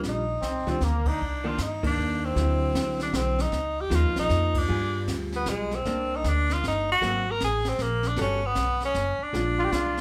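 A clean, picked hollow-body electric guitar, a woody, thumpy pizzicato upright bass and a brushed kit with dark cymbals and a boomy kick open this sophisticated, swinging small-group jazz cut in 3/4, with the band playing live together in a moderately reverberant large studio room. A bright tenor saxophone takes the solo melody up front with vibrato and scooped notes, joined briefly by a mellow trumpet line that drops out at 1.2 seconds after a drum fill and returns at 9.6 seconds. Band accents punctuate the groove over rich extended harmony moving from Ebmaj9 through altered and suspended chords to Bb7.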